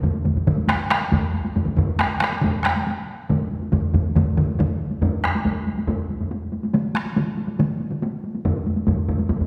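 Japanese traditional taiko drum ensemble music, ceremonial and driving, moves at 139 BPM in a straight 4/4. Three taiko ensemble parts carry the percussion together from the opening. One is struck with hard sticks in a small room, another is played with heavy sticks in a live room and sits up front as the loudest layer, and the third, also on hard sticks, is close and dry and likewise up front. The whole passage rings out on a wet scoring stage reverb with a 1.8-second decay, giving the acoustic drums a large, resonant space. The piece shifts into a second section at 5.0 seconds, and the close, dry part drops out at 8.0 seconds while the others carry on to the end of this fragment cut from a longer performance.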